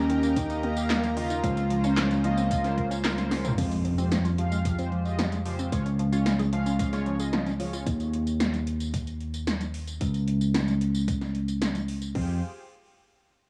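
Driving straight 4/4 synthwave with a nostalgic cassette haze, where an overdriven thumpy kick and gated 80s electronic drums with metallic hats carry a growly, up-front picked electric bass under a smooth, vibrato-touched synth lead that sings only until 3.3 seconds, a pumping soft supersaw, a round analog pluck arpeggio and dark brassy synth stabs that fall away at 7.8 seconds, with a very quiet electronic impact at 3.6 seconds after a drum fill and the bass and drums pressing on to the end of this cut, joined briefly by the supersaw chords at 12.2 seconds.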